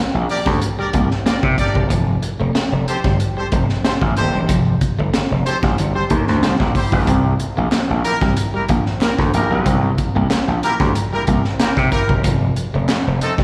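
A straight 4/4 funk groove at 93 BPM rides on a crunchy breakbeat kit with a high-tuned snare, tight kick and rolled-off top, set up front beside an overdriven, gritty slap bass that sounds bright and punchy. Behind them a twangy electric guitar at the edge of break-up plays a riff with spring reverb and slapback echo, while a distant, roomy horn section with vibrato and octave doubling carries a second line over C9, Fadd9 and C7 chords, and a hollow group handclap joins in the background at 7.7 s. This playful excerpt sounds like a live gig heard through the venue's PA, with recital hall reverb and vinyl crackle.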